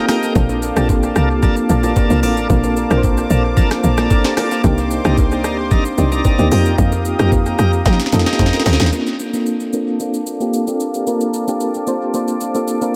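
A tight, punchy FM log drum bass anchors this relaxed, echo-heavy amapiano groove at 112 BPM in Bb major, over a dark tremolo FM electric piano, a smooth detuned sawtooth pad, gritty overdriven tonewheel organ stabs through a slow rotary speaker, a produced afro-pop drum kit with knocking kick, sharp snare and crisp hats, and very quiet hand-struck bongos and congas, until a drum fill at 7.9 seconds gives way at 8.9 seconds to a filter sweep in which the bass, organ and hand percussion drop out, leaving the piano, pad and kit.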